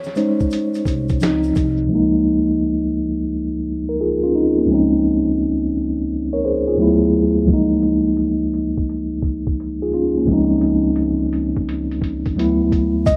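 A mellow tine electric piano, clean and up front through its built-in speakers, anchors this cosy lo-fi hip hop excerpt in Db major at 86 BPM, with a swung sixteenth-note feel in 4/4. It opens with a short electric piano solo over Abadd11 and Dbmaj9 chords. In that opening stretch the piano is joined by a grainy, bright tube shaker in the background, a woody pizzicato upright bass, and a compressed, pitched-down sampler-style kit with a thumpy kick and a medium-tuned snare. From 1.9 seconds a filter sweep runs through the rest of the clip as the piano moves among Db69, D69 and Dbmaj13 chords. The muffled, tape-warm drums return up front at 7.5 seconds with hi-hat, kick and snare. The whole piece sits in a rough home-demo mix with cassette tape character, a low-pass filter and a moderate plate reverb that adds a soft, lingering haze.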